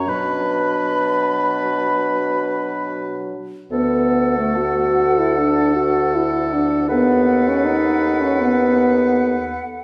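A French horn sits up front in this slow, elegiac classical movement for wind quintet, its warm, lightly vibrato tone carrying the accompaniment beneath a hollow, pure-toned concert flute that sings the yearning melody above with vibrato and tongued notes. A close-miked oboe adds a clear second line with gentle vibrato, a clarinet accompanies from the background, and the bassoon anchors the bass with light vibrato. In a rubato 4/4 at 64-81 BPM, the harmony turns from B minor to D major at 3.7 s and reaches B7/D# at 6.9 s, all heard from further back in a wet recital hall in this short fragment of a longer piece.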